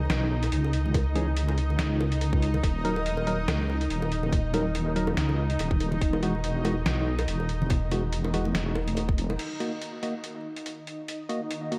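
A deep, dark wobble bass sits up front in this heavy, meditative deep dubstep excerpt at 142 BPM in a swung half-time feel in Eb phrygian, where a tight layered electronic kick, a muffled pitched-down sampler-style drum kit with crash, hi-hat and snare, and background bongos and congas with dub echo ride beneath a blurred granular cloud pad and a hollow, wave-folded organ stab with chorus and dub echo that enters at 1.2 s, moving from Ebm to Eadd9 through a drop that ends at 9.4 s, when the bass and hand percussion stop, all set in a dreamy, reverb-soaked hall with vinyl crackle.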